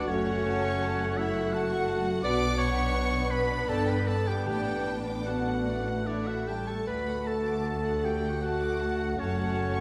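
A tender, lyrical slow romantic movement for symphony orchestra in D major, moving in a rubato 3/4 at roughly 74-87 BPM. A warm, bowed violin section carries the melody with vibrato, joined on second lines by a rich, focused violin section, a clear, close-miked oboe, a present clarinet and an airy flute ensemble. Beneath them, a distant bassoon, a viola section with expressive portamento, and a mellow French horn section holding sustained chords fill out the harmony over a lush, smooth cello and double bass foundation. Very quiet timpani played with soft mallets sound from 4.5 to 5.6 seconds, and the whole passage sits in a reverberant scoring-stage space as a fragment of a longer work.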